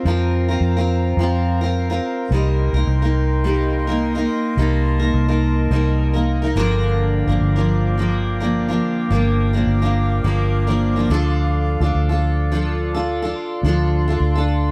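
A bright, double-tracked fingerpicked steel-string acoustic guitar and a distant, soft-attack woodwind section holding sustained chords open this wistful, reflective acoustic pop fragment, joined at once by a round, punchy, foam-muted electric bass sitting up front, all captured in a dry, close 1970s-style studio sound as the harmony moves from Fsus4 through Cm7 and Gm7 to Dm.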